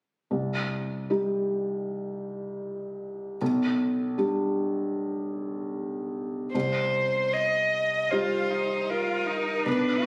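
Neoclassical piano and strings in a reflective, melancholic mood, with a rubato feel, opening on a felt-muted upright piano alone, soft and intimate with audible action noise, before a dark, vibrato-laden solo violin takes the melody at 6.5 seconds and a rich, close cello adds a second line from 8.1 seconds, all heard through light reverb in a phone recording cut from a longer piece.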